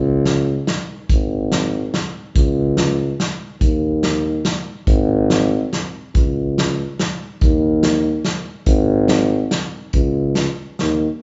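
A warm tuba opens at 0.0 s, playing a low, classical-style bass line up front with a light vibrato and a roomy, distant tone. At 0.3 s an acoustic drum kit played with bundle sticks joins, its punchy kick, medium-tuned snare and hi-hat carrying a festive, jolly alpine folk dance in 3/4 at 142 BPM with a loose swing and rubato feel. The band plays live together in a large studio with a moderate reverb and a dark, rolled-off top, and this short cut from a longer piece ends around 11.2 s.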